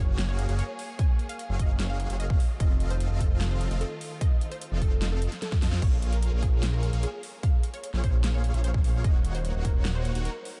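A dry, dull-topped mix carries this bittersweet, emotional half-time future bass drop, where a thick, saturated detuned saw bass and a huge supersaw chord riff with cassette-tape colour pump under sidechain, and a wave-folded unison pluck melody with delay rides on top. A bowed studio string section holds smooth sustained chords in the background until 5.8 s. A dubstep kit with a massive snare and metallic hats drives the groove with a punchy, tape-warmed electronic kick from 1.0 s, and a drum fill at 5.4 s leads into the repeat of the drop.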